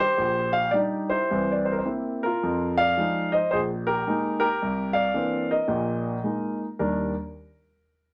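Relaxed and sophisticated, this short fragment of solo jazz features a grand piano with a warm, natural tone placed up front, its swung eighth notes loosened by rubato as it ranges from low Bb1 to F5. The harmony moves from Ebmaj7 through C7, Fm7, Bb7sus4 and C9 before settling back on Ebmaj7. A moderate club reverb gives the room a gentle presence, and the piano sounds until 7.1 seconds.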